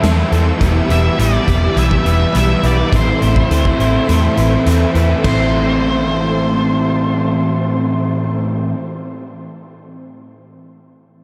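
Shoegaze-leaning dream pop rock in a straight 4/4, this brief, dreamy and brooding cut from a longer piece moves from Am to Em and Amadd9 before settling back on Am. Two overdriven guitars drive the low riff together: one dark and compressed with a reverse reverb, the other a hollow-bodied semi-hollow guitar coloured by analog chorus. Beneath them sits an up-front vintage bass, foam-muted, round and punchy, while a very quiet direct-recorded clean guitar picks arpeggios in the middle register. A huge arena drum kit with a punchy kick, a medium-tuned snare, hi-hat and crash plays in a big natural room until 5.4 s. An octave-fuzz lead guitar enters at 0.9 s with a distorted, delayed melody, and a swirling, sawtooth string machine with ensemble chorus and phaser holds sustained chords in the background. The whole mix is soaked in a vast ambient reverb with a long tail.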